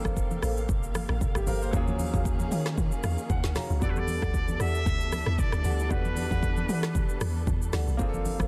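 Hypnotic and deep, this 115 BPM amapiano excerpt swings over an up-front electronic kit with a woody snare and a round, dark log drum bass that sits loudest in the mix, while low-tuned congas and a mellow marimba with tape echo stay in the background. A clear concert grand piano comps through Gm11, D#m11 and Em11 with a fill at 2.8 seconds, beneath lush, distant strings that pump with sidechain. A nasal, straight-muted trumpet with tape echo sings a short solo line from 3.8 to 7.5 seconds, all set in a small room and a dense, heavily limited master.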